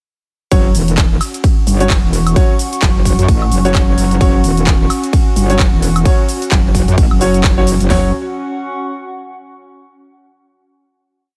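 A swaggering, aggressive bass house drop bursts in at 0.5 s with a punchy four-on-the-floor kick, huge snare and overdriven big-room drums up front, layered with a house kit of bright hats, shaker, woodblock, ride and a clap backbeat on a swung sixteenth feel. A saturated, metallic wobble bass with chorus and sidechain pumping drives modulated phrases with changing wobble speed, while a boxy grand piano fires syncopated chord stabs, one shape moved in parallel, through tape echo. From 1.2 s a nostalgic, lo-fi pad warbles beneath with slowly shifting chords, and it carries the final chord through to 9.7 s in a dry, loud mix.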